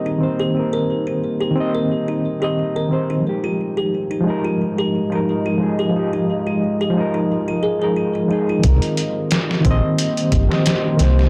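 Cinematic and smoky, this trip hop excerpt moves at 89 BPM in F minor with a swung 16th-note feel, drifting between Cm7 and Fm9. A gritty, reedy electric piano, overdriven through a combo amp with fast tremolo, harmonic tremolo and tape echo, carries the accompaniment up front for the whole clip. Beneath it a deep, moody ambient pad of detuned sawtooth and sine layers holds sustained chords with chorus and built-in reverb, a filter sweep running across it until 8.6 s. A delicate, tinkling music box plays mellow arpeggios through tape echo, while a very quiet, tense, string-like drone with vibrato hovers underneath. At 8.6 s a round analog bass and a muffled, pitched-down sampler-style drum kit with a thumpy kick, overdriven and compressed, enter together as the chords return to Cm7. The production is dark and warm, with little reverb.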